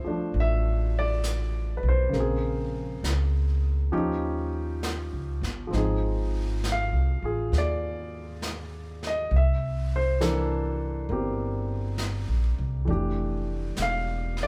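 A tender, late-night jazz ballad at 67 BPM with a gentle swing, cut from a longer piece and carrying the light reverb of a band playing live in one room. A clear, natural baby grand piano sits up front and voices lush chords such as Dm9, Eb9 and C13 before settling on Fmaj13, while a woody, pizzicato upright bass on steel strings anchors the low end close by. A jazz kit played with brushes, its brushed snare and hi-hat set softly back in the mix, enters at 0.3 s.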